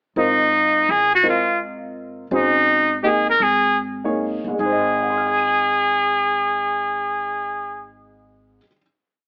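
Heard through a thin AM-radio filter with a light touch of reverb, this short modal jazz piece in a swung three feels searching and open. Up front, a clear, vintage-toned trumpet carries the solo melody, built from hook-like motifs and coloured with vibrato. Beneath it, a dark, mellow baby grand offers intimate, syncopated comping in quartal voicings, its short sustain and audible action noise giving it a natural, close presence. Further back, a woody, thumpy upright bass on gut strings plays pizzicato in a two-feel. The tempo slows from 2.3 to 4.6 seconds, where the group settles onto a final chord; the trumpet drops out at 7.9 seconds and the piano rings on until 8.8 seconds.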